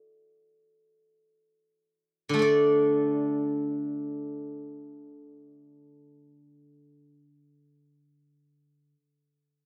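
Set in light reverb, this short excerpt of Chinese traditional music features a solo steel-string zither. Played with fingerpicks in free time, it sounds silvery and ringing, placed up front and spanning D3 to D5, tuned slightly below standard pitch with A4 at 437 Hz. The mood is flowing and elegant, with a slowing over the opening 2.4 seconds before a new passage runs from 2.4 to 6.8 seconds, and the zither sounds on until 8.9 seconds.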